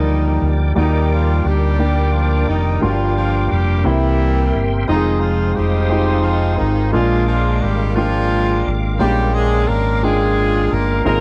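A warm, tightly voiced horn section carries the melody up front in octave doubling with light vibrato, over clear, intimate concert grand piano accompaniment with audible action noise, a round, punchy fingered electric bass, and a reedy tonewheel organ holding sustained chords in the background through a slow rotary speaker and chorus vibrato, in this uplifting, hopeful slow gospel excerpt in 6/8 at 58 BPM, moving from Ebmaj7 through Gm7, C7 and Fm7 to Bb7 with a dry, close 1970s-style studio sound in a small room.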